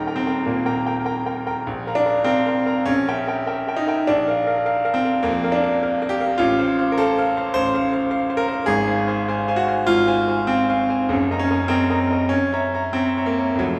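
A bright, brilliant grand piano sits up front and plays alone throughout this brooding, stormy romantic character piece in Bb major, moving with a free rubato feel between 89 and 109 BPM in 4/4 and ranging from Eb1 up to Bb5. The harmony wanders from Eb through a Bbdim7 and Bb to darker colours like Fm/Ab, Ebm/Gb and a closing Gb7 at 12.3 seconds. Wet concert hall reverb gives the natural piano tone a resonant, church-like space in this passage cut from a longer work.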